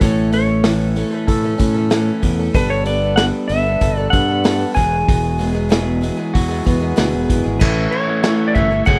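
A clean lap steel guitar carries the hopeful melody with slide and volume swells in this jangly folk and heartland rock excerpt at 95 BPM in A major, over a bright picked acoustic archtop with finger squeak, a slightly broken-up, compressed electric guitar riff through a small old amp, a punchy up-front vintage drum kit with dark cymbals and a pumping small-room sound, and a direct, modern fingered electric bass, while a clear tonewheel organ with a stopped rotary speaker enters at 2.5 s with sustained background chords as the harmony moves from A through Gadd9 and Eadd9 and back to A, set in a studio reverb.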